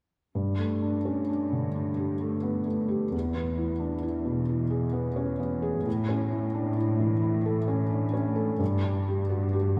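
Bathed in the wet tail of a church or concert hall, this cinematic excerpt in G lydian drifts tenderly at 44 BPM in a rubato 6/8, with an intimate felt-muted upright piano up front, its thin felt and audible action noise framing the accompaniment from 0.3 seconds, while a distant, veiled con sordino cello section bows a dark, vibrato-laced bass line from 0.4 seconds beneath chords moving from Gsus2 through E and A to G5.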